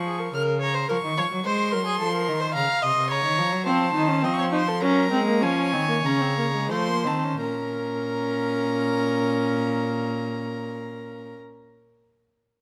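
A high violin melody and an up-front, rich cello bass open this solemn yet driving baroque-style fugue fragment for string quartet in Bb minor and 3/4 at 84-110 BPM, joined almost at once by a second violin line with light vibrato, while the tempo slows from 2.8 to 7.4 seconds and a dark viola with a smooth top enters with accompaniment at 3.7 seconds. All four gut-strung, period-style bowed parts sound reedy, the two violins also nasal, in light reverb over chords moving from Bbm/Db through Ab, F7 and Gb back to Bbm.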